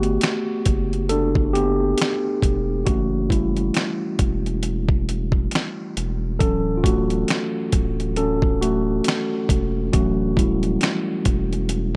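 A mellow tine electric piano leads this hazy, nostalgic lo-fi hip hop excerpt, taking a solo across the full 12 seconds with a clean, direct tone softened by a low-pass filter and sitting up front. It moves through Gmaj7, F#m7 and Dmaj9 at a relaxed 68 BPM in 4/4, with a 16th-note swing of 58% and tuning set to A4 = 444 Hz. Beneath it, a saturated sub bass holds the low end, deep and thick with a sine-like body, a fast attack and sustained notes. A dusty, sampler-style soul drum kit plays finger snaps, hi-hat, kick and snare; it is compressed, gritty and overdriven, with a thumpy kick and fat snare placed up front. Light reverb and digital ambience add a soft haze around the whole mix.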